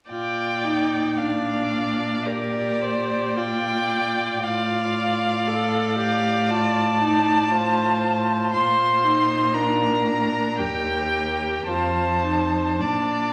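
From 0.1 s a string quartet opens a slow, serene romantic movement in Bb major, moving at 52-60 BPM in 4/4 with a flexible rubato feel. Up front, a warm first violin carries the expressive melody with vibrato, soft attacks and portamento. A clear second violin and a rich-toned viola play smooth, even lines beneath it, while the cello's expressive bass glides with portamento through harmonies that pass from Bb to F7/A and back to Bb, then on to Eb and F, before returning to Bb, all set in a reverberant recital hall with vinyl crackle in this excerpt from a longer piece.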